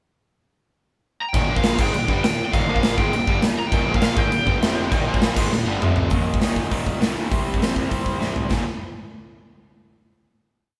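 The band sounds as if it is playing live in one room, with a touch of light reverb around a short, rebellious, energetic punk rock piece. A big acoustic rock kit sits up front, its punchy kick, medium-tuned snare and bright cymbals driving a fast punk groove, with fills at 5.5 and 8.2 seconds. A raw, lo-fi, double-tracked garage guitar hammers quarter-note power chords through the riff, backed by a thicker distorted fuzz guitar in the background that drops out at 6.1 seconds. Underneath, a growly fuzz bass pushes eighth notes and doubles the guitar riff. Between 1.2 and 5.8 seconds a lead guitar through a small cranked amp adds a free, overdriven melody with a warm edge. After a brief pickup bar and the main riff, the piece moves into a short outro and ends on a final chord.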